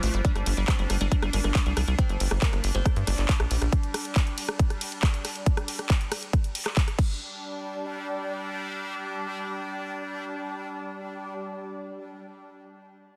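A punchy, up-front electronic kick drives a straight 4/4 pulse from 0.2 s, joined by a layered big-room dance kit of hi-hat, ride, crash, handclaps and rim clicks in this hypnotic, alien psychedelic trance excerpt. Beneath it, a tight sawtooth sequencer bass drives hard, while a squelchy liquid acid bass riff with phaser, tape echo and sidechain pumping plays briefly, and a very quiet, juicy blip pluck flickers high above. A woody, fretless oud with dub echo and phaser sits in the background, and a bubbling stepped-filter texture with chorus and reverb holds sustained chords until 11.5 s, all under a dense, heavily limited master.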